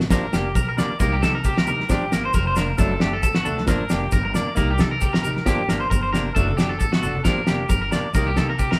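A cloth-damped, thuddy drum kit with a fat snare and tight kick opens alongside woody pizzicato upright bass and a bright, clean semi-hollow electric guitar accompanying in G minor, before a twangy, slightly broken-up electric guitar enters up front at 0.1 seconds with arpeggios bathed in spring reverb and slapback echo, grainy maracas sit in the background and soft-handed congas join very quietly at 0.6 seconds, giving this warm, danceable highlife guitar band excerpt at 134 BPM a lightly swung, live-room feel over Gm7, Cm7 and D/F# changes, with a drum fill at 6.9 seconds.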